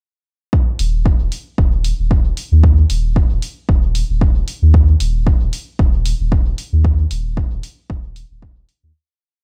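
An overdriven electronic kick drum sits up front with a deep, four-on-the-floor pulse from 0.5 seconds, opening this short, hypnotic and meditative dub techno piece with a gentle swing. A round, sine-like sub bass with tube saturation and sidechain pumping carries a sustained dotted rhythm beneath it, while a quiet, analog hi-hat adds programmed hats and a backbeat. The gritty hardware sound stays close and dry before the groove fades out from 6.1 seconds.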